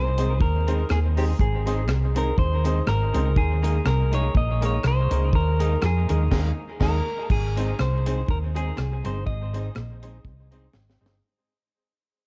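Cheerful and joyful, this lightly swung ska cut opens with a twangy, clean electric guitar carrying the melody through tape echo, a slightly broken-up, compressed guitar playing a very quiet low riff, and a round, dark hollow-body fingered bass sitting up front. A dry, acoustic reggae kit with a high-tuned snare, tight kick, rim clicks, hi-hat and crash joins at 0.2 seconds alongside a miked archtop guitar's clean, picked accompaniment and a brilliant, woody, slightly detuned upright piano whose echoing stabs carry audible action noise, while hollow, close group handclaps add faint percussion. After a band accent at 6.3 seconds, the piece fades out under light reverb and vinyl crackle, closing on a drum fill at 10.7 seconds.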